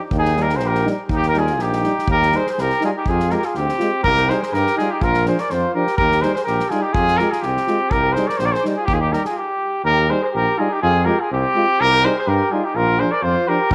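Swung sixteenths drive this wild, virtuosic Balkan brass band excerpt at 124 BPM in 2/4 and Eb major: a punchy, up-front trumpet carries the melody with slapback echo over a distant flugelhorn second line that also has slapback echo and a light vibrato, while two background euphoniums, one warm with light vibrato and one mellow and close-miked, hold the accompaniment above a roomy, up-front tuba bass, and an acoustic kit of punchy kick and medium-tuned snare played with bundle sticks drops out at 9.3 seconds for a brief stop before returning with a hit at 13.7 seconds, the whole band set in a moderate echo-chamber reverb.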